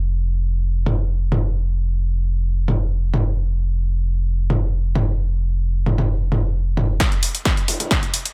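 A deep, round sine sub bass in F1 sits up front from the opening of this hypnotic, driving peak-time techno excerpt at 132 BPM in a straight 4/4, its fast attack and sustained notes given a warm glow by tube saturation, pumping sidechain movement and a low-pass filter. At 0.9 seconds a layered electronic kit of hi-hat, snare and toms joins it, with a punchy snare and warm hats carrying a tape-toned character, high-pass filtering on the toms, snare, hats and room, and sidechain pumping on the toms and hats. The bass holds until 7.0 seconds, where a heavy, up-front electronic kick drum arrives for a short burst alongside a build-up, a drum fill and a filter sweep. Both drum parts have a produced, re-recorded small-room feel, and the overall sound is dry and close with little reverb.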